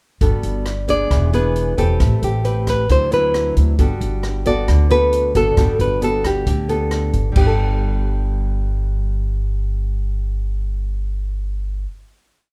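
A soft bossa groove from a dry compact cocktail drum kit, with punchy kick, rim click, hi-hat and crash cymbal, drives this breezy, sophisticated bossa nova piece alongside a woody, growly pizzicato upright bass playing dotted root-and-fifth lines, while one fingerpicked nylon-string guitar supplies thumb bass and syncopated plucked chords and a bright, up-front classical nylon-string guitar spins a motif-based melody in sentence phrases from 0.9 s, the drums dropping out at 7.5 s as the band rings out on a final chord in a lightly reverberant live room.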